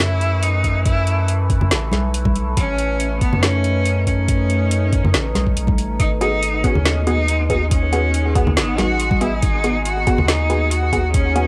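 An excerpt of deep dubstep opens with a bright, distant cello singing a bowed melody with vibrato through dub echo, over a round, soft sub bass sitting up front and a garage drum kit with a woody snare and metallic hats. At 140 BPM in a half-time 4/4 feel in G# phrygian, the mood is meditative and brooding, moving from Aadd9 to G#m7. A knocking, overdriven electronic kick joins at 0.6 seconds, and the kit shares its overdrive, small room ambience and cassette tape grit, while hard-handed congas sit close yet in the background. Beneath it all, a resonant drone with moving overtones holds sustained chords, colored by chorus, phaser and its own reverb. From 6.2 seconds a muted, detuned chord stab with a filter pluck and sub octave enters, bathed in phaser and dub echo. The whole has the intimate feel of a home cassette recording in a small room.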